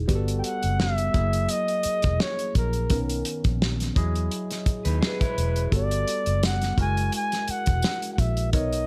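Lush and smooth 1970s-style soul at 85 BPM, cut from a longer piece, with a breathy, whispered flugelhorn melody carrying scooped notes and vibrato up front over a barky tine electric piano with phaser, a dark, foam-muted fingered bass, and a fat-snared soul drum kit, while a slightly broken-up lo-fi guitar riff surfaces briefly at 4.8 seconds and a jingly tambourine sits in the background from 6.4 seconds, all through chords moving from Gmaj9 to F#9, Bmaj9 and Emaj9 in a small room.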